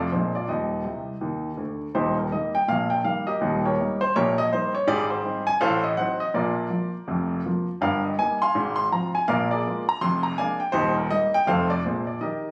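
Captured on a phone in the room, this compressed recording carries a moderate club reverb. It is a short stride piano cut from a longer jazz piece in Eb major at 164 BPM, swinging its eighth notes with an exuberant, swinging mood. A concert grand plays alone throughout, sounding intimate and up front, with a deep bass, a natural tone and audible action noise from the instrument. The piano ranges from Eb1 up to C6, and a brief fill between 0.9 and 1.9 seconds leads into the longer second section. The harmony moves through Abmaj7, Adim7 and Eb/G before a Bb7 turnaround and a closing F7 to Bb7 at the 12.5-second cut.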